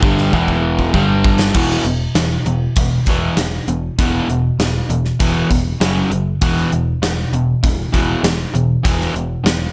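A straight 4/4 pulse at 99 BPM drives this heavy, menacing hard rock excerpt in E dorian, cut from a longer piece. A gated 80s drum kit sits up front with a punchy kick, a medium-tuned snare, hi-hat and bright crash cymbals in a polished, airy stone-room sound, and a drum fill runs from 0.3 to 1.5 seconds. A crunchy, double-tracked overdriven guitar, also up front, picks a low riff between E2 and G3, moving from Em and G5 to E5 at 1.5 seconds, then briefly to F#5 before returning to E5. Beneath it, a picked electric bass plays down between E1 and G1 with a growly, direct-and-amped bite. A light reverb surrounds the mix, and all three parts play together from the start to the cut.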